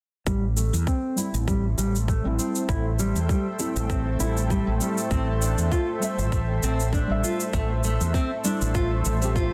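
This organic downtempo excerpt opens at 0.3 s with a fingerpicked classical nylon-string guitar playing arpeggios through a low-pass filter and digital delay, a dark, round fretless bass up front with lush chorus, and a tight, tape-warm electronic kick and cabasa re-recorded in a large room, with filter sweeps running across the guitar and bass. At a hypnotic 99 BPM with swung 16ths, a soft, wave-folded chord stab carrying chorus, phaser, delay and sidechain pumping enters at 1.2 s, followed at 1.7 s by a cloudy, blurred granular pad with built-in reverb and the same pumping. The mystical harmony moves from Am7 to Dm7/A at 5.1 s, all in a dense, heavily limited modern mix with light reverb.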